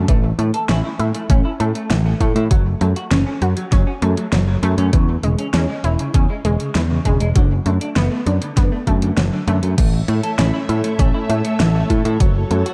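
A detuned sawtooth pluck opens this moody, nocturnal synthwave passage, tracing bright arpeggios through a cassette-tape haze and tape echo, while a picked electric bass sits up front with a direct, tube-saturated growl. A clean semi-hollow electric guitar plays a riff through lush chorus, a low-pass filter and its own tape echo, giving it a soft, hollow-bodied glow. Underneath, an overdriven electronic kick knocks at the front of the mix, layered with a pop drum kit whose fat snare, crash cymbal and hi-hats share that same overdrive and small-room grit. The harmony moves through A, F#m, C#m/E and D6/F#. At 10.0 seconds a vintage string machine arrives with slow-attack sustained chords, thickened by a sub octave, phaser, ensemble chorus and sidechain pumping. Light digital ambience and a dark, warm production frame this short section of a longer piece.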